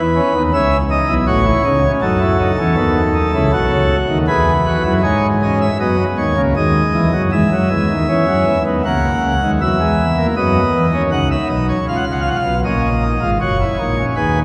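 Bathed in a cathedral's long, wet reverb, this elegant and stately baroque-style three-part fugue in E major at 79 BPM features a solo pipe organ on a full, up-front principal chorus with baroque voicing, its stately harmonies moving through dominant sevenths before shifting to a new section at 11.9 seconds that closes on F# in this brief cut from a longer piece.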